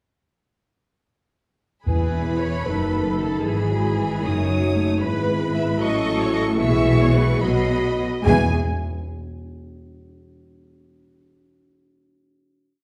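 Spirited and graceful, this brief classical-period movement for symphony orchestra unfolds in a lilting 6/8 with a rubato feel, its full ensemble entering together at 1.9 seconds as a rich, expressive violin section carries the melody above a clear, lush second violin line and smooth, even violas weaving independent inner parts. Mellow French horns hold tight sustained chords while focused cellos in the background and a close, rich, smooth double bass section anchor the bass. Timpani played with medium mallets mark the opening and return for the final chord at 8.3 seconds, all set in a reverberant recital hall heard from further back in the room.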